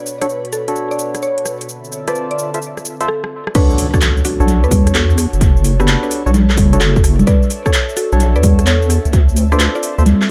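A deep, saturated wobble bass enters at 4.4 seconds and anchors this skippy, bouncy two-step garage cut at 129 BPM in B minor, sitting under a punchy kick that arrives at 3.5 seconds, just before the drop lands at 3.6 seconds with a background impact. From the start, a woody mallet-like pluck carries the melody over a breathy, sidechain-pumping pad and hollow, nasal organ stabs shaped by a filter sweep. Meanwhile a swung, up-front house kit with metallic hats, congas, claps, rim clicks and shaker plays a fill into the drop. Dub echo trails the pluck and stabs, the melody carries vintage 12-bit grit, and the echo-heavy mix with light digital ambience moves between Bm7 and Dm7.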